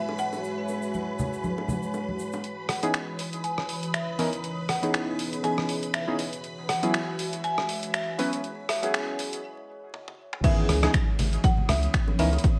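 A vinyl crackle and a moderate room reverb give this late-night deep house excerpt a smooth, dusty glow, with a gentle swing in the groove. A woody marimba, struck with hard mallets and close-miked, carries the melody over a moody ambient pad, an airy, breathy pad and a shimmering vintage string machine of violins, all three pads pumping from the sidechain. Bongos and congas with soft hands and a grainy egg shaker open the track. A gritty, sampler-style soul drum kit with snaps, rim clicks, hats, ride, toms and crash takes over at 2.4 s, joined by round analog key stabs up front, while filter sweeps on the ambient pad and the marimba build toward a break at 9.4 s. The drop lands at 10.4 s with a punchy, tape-tinged electronic kick and a deep sine sub bass, and the hand drums return as the chords move between E6/9 and C#m9.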